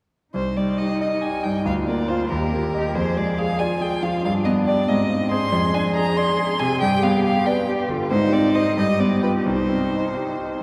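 A quick, urgent and stormy classical-period piano trio movement in C minor at 93 BPM in a rubato 6/8, cut from a longer piece, with a clear, smooth violin melody with vibrato up front, a distant cello second line bowed with vibrato and expressive portamento, and a bright, brilliant concert grand carrying the accompaniment with deep bass and short sustain, all three entering at 0.3 seconds, bathed in cathedral reverb within a dark production, and moving from C minor through G and Ab to a G7 that returns home to C minor at 9.5 seconds.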